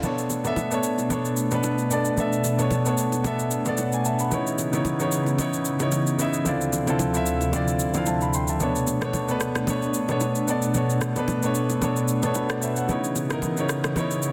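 Amapiano with a soulful, hypnotic feel, this excerpt sets a clear, polished baby grand piano up front, playing accompaniment over Bm7, C#m7 and Dm7 chords, while an airy, breathy pad with chorus holds sustained, mellow chords beneath it. An electronic shaker and rim click, overdriven with soft clipping on the snare, drive the swung groove, and bright, close, dry congas and bongos sit in the background until 14.1 seconds. Light digital reverb surrounds a dense, heavily limited modern master.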